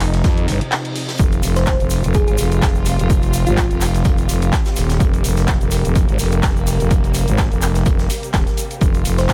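Swaggering and gritty, this 126 BPM bass house cut in F minor rides a swung groove, led by a thick, growling FM bass with overdrive and sidechain pumping, set up front beside a punchy, overdriven electronic kick that enters at 0.2 s, while a house kit adds bright hats and handclaps and a very quiet vintage kit contributes hi-hat and a medium-tuned snare. Underneath, a studio string section holds sustained, vibrato-tinged bowed chords, also pumping, and a reverse cymbal sweeps in at 0.5 s into a brief break before a grainy egg shaker joins at 1.2 s. A round, tine-like synth pluck in the manner of a thumb piano carries the melody from 1.6 s, its warbling, vintage tone colored by chorus, cassette tape and dub echo, all within a small room ambience in this fragment of a longer piece.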